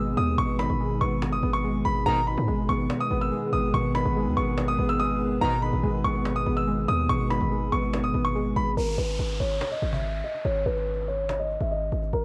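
A bright, brilliant concert grand piano carries the melody up front, its long sustain ringing through this hard-hitting, melancholic trap cut from a longer piece. Beneath it, a distorted, aggressive 808-style bass hits heavy and decaying, while warbly, detuned lo-fi synth keys add a nostalgic, mellow accompaniment until 8.8 seconds. A very quiet, woody cajon with soft hands and faint snares keeps a half-time feel. A dark, moody analog pad sits in the background with slow-attack sustained chords from 2.6 seconds, and a distant, roomy brass section punctuates with two tight, lightly vibrato stabs. From 8.8 seconds a filter sweep and an electronic downlifter close the passage, all wrapped in small-room ambience and the worn pitch drift of old cassette tape.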